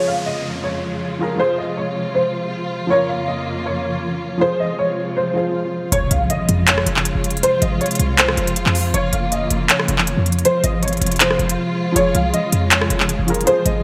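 Hip hop in a trap style, this eerie, dark excerpt runs at 159 BPM in 4/4 with a half-time feel, cycling through Db/F, Fm and Bbm/F. A dark, worn grand piano carries the melody with audible action noise, treated with ensemble chorus and delay. Lush bowed symphonic strings hold sustained chords with expressive vibrato and a smooth top. A soft, felt-muted upright piano sits in the background with short sustain, dropping out at 5.9 seconds and returning at 11.9 seconds, while electronic sound effects (a downlifter, swell and impact) build toward and punctuate the arrival at 5.9 seconds. There the crisp, overdriven trap drum kit enters up front with handclaps, hi-hat and rim click under gated reverb, joined by a punchy, tight 808-style bass built from a sine tone and a noise layer. A brief break around 11.6 seconds interrupts the beat before Db/F returns, and the track has a bright 1980s-style digital production with light reverb.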